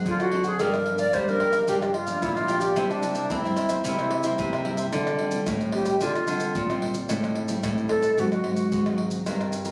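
This excerpt of samba and choro opens with a mellow, crisply picked cavaquinho and a fingerpicked nylon-string guitar, with a bittersweet, yearning mood at a straight 111 BPM in 4/4. An airy, bright alto flute carries the melody up front with vibrato and tongued notes, touched by a slapback echo. A second fingerpicked nylon-string guitar holds the bass, while maracas, surdo, pandeiro and tamborim play close, with a deep surdo and hard hands. The cavaquinho stops at 4.9 s, where the music settles into D minor and the flute takes a solo over chords moving from Dm7 to Am7. The accompanying guitar sits up front with classical tone and audible finger squeak. The whole is captured on a phone in the room, with light club reverb.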